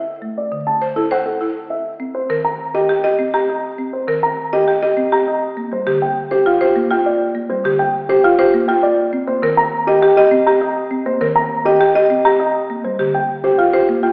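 A dark, intimate baby grand piano carries the melody from the start, its short-sustained notes sitting up front with audible action noise, in this hypnotic, propulsive stretch of minimalist classical pattern music in three, cut from a longer piece. A rustic folk marimba played with soft mallets adds round, low accompaniment from 0.2 seconds, and at 0.8 seconds a buzzing, boxy hard-mallet marimba joins with percussive arpeggios. Over an opening Dsus2 and then chords that alternate between Eb and Bb6, the parts are heard from further back in a wet scoring-stage reverb with an AM-radio coloring.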